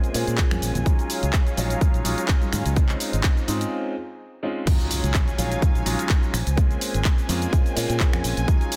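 Filtered disco house at 126 BPM in Eb dorian, sensual and groovy, where a punchy, up-front electronic kick drives a tape-warm house kit of hi-hat, shaker, finger snaps, handclaps and crash, while a round, foam-muted fingered bass with tube saturation, a clear, intimate grand piano with audible action noise and phaser, and a distant, woody violin section holding bowed chords through 12-bit sampler grit all pump and sit behind a low-pass filter, as very quiet, bright tambourine and congas stop at 3.7 seconds and a short break gives way to the drop at 4.7 seconds, marked by a faint electronic impact, over Bbm9, Ebm11 and Dbmaj9 chords.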